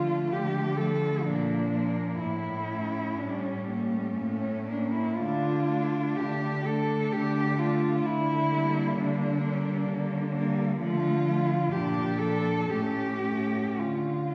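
In a slow, rubato triple metre, this elegiac classical piece for cello ensemble unfolds with a melancholic, lyrical ache. A dark-toned solo cello carries the melody up front, bowed with vibrato, soft attacks, portamento and a smooth top, shaping each phrase expressively. Beneath it, three rich cellos fill out the texture: a distant second line sitting in the background with its own vibrato and portamento, a smooth, even accompaniment in the middle register, and a steady bowed bass that grounds the harmony. The progression moves through minor, major and dominant-seventh colours before settling back on its home chord at 13.8 s. The ensemble is bathed in the generous reverb of a church or concert hall, giving this brief passage, cut from a longer piece, a spacious, mournful glow through to 14.3 s.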